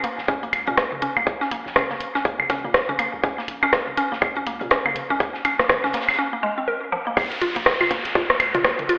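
Minimal techno at 122 BPM in 4/4, cut from a longer piece in Bb minor, with a cool, sparse mood and a 59% swing on the sixteenths. A woody, nasal FM synth pluck with a mallet-like character carries the riff up front, treated with chorus, sidechain pumping and dub echo, while a deep, punchy sine sub bass with a pitch-drop attack pumps beneath it. An overdriven electronic kick enters at 0.3 s alongside an overdriven garage kit of hi-hat and rim click, and a small-room acoustic funk kit with a high-tuned snare and pumping, high-passed hats sits in the background. Tape-warm analog woodblock and toms, re-recorded in a large room and trailed by dub echo, add further percussion. After a break from 6.2 s, the harmony drops out of its Bb minor chord at 7.2 s for the drop, where an electronic downlifter joins. The whole sound carries plate reverb and stone-room ambience with a telephone-like, big-system-in-a-bare-room coloring.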